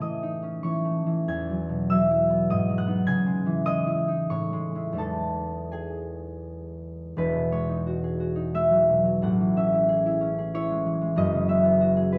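A thumb-plucked concert harp, ringing and up front, carries this serene, graceful classical excerpt in E major, moving in a rubato 3/4 at 81-103 BPM through lush chords such as Amaj7#11, Emaj9 and F#9sus4 across a span from E1 to G#6, bathed in a wet recital hall reverb within a dark, warm production.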